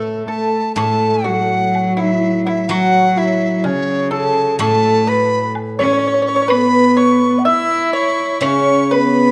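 Festive yet graceful, this slow Chinese traditional chamber passage moves at 62 BPM in a rubato 2/4 in the A gong mode, with a bright, reedy large dizi carrying the up-front melody over a rich, bowed cello line. A breathy, mellow low xiao with vibrato and a soft attack and a dry, percussive pipa sit farther back as second lines, while at 0.8 s a silvery, ringing steel-string zither enters with fingerpicked accompaniment and a woodblock adds light percussion in the background. The close, detailed sound is set in a moderate recital hall, and the passage is cut from a longer piece.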